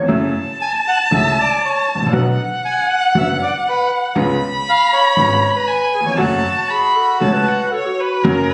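A brief hollow flute note and a bright, vintage grand piano open this tense, dramatic tango excerpt in F# minor at a rubato 118 BPM, soon joined by a rich violin singing with vibrato and portamento, a woody pizzicato upright bass and, from 0.6 seconds, a reedy, dark bandoneon carrying the melody over an F#m7–Bm–C#7–F#m progression before the flute returns at 6.7 seconds, all captured on a phone in a room with wet, club-like reverb.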